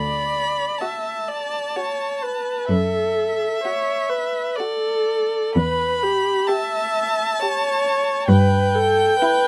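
A slow, rubato 3/4 at 64 BPM carries this yearning, melancholic romantic movement for string quartet in D major, cut from a longer piece and moving from D through D/F# to Em. A focused, rich-toned first violin sings the melody up front with vibrato, over a viola accompaniment full of expressive portamento and the cello's warm, even bass, which ends at 9.0 s. A dark, intimate second violin enters at 0.8 s, played sul tasto with light vibrato and a soft attack, while close, detailed microphones and light reverb keep the sound near and clear.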